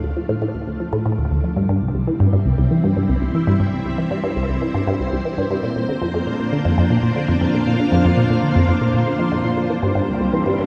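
Ambient, sequencer-driven space music at 118 BPM in 4/4, hypnotic and mysterious, cut from a longer piece, where a juicy, squelchy resonant blip pluck plays an up-front riff with phaser, cassette tape and analog delay while a lush, vintage string machine ensemble fades in over the full 10.7 seconds with slow-attack sustained chords through ensemble chorus, moving from Dm to C, Bbadd9 and back to C, all set in a vast, echoing cathedral reverb.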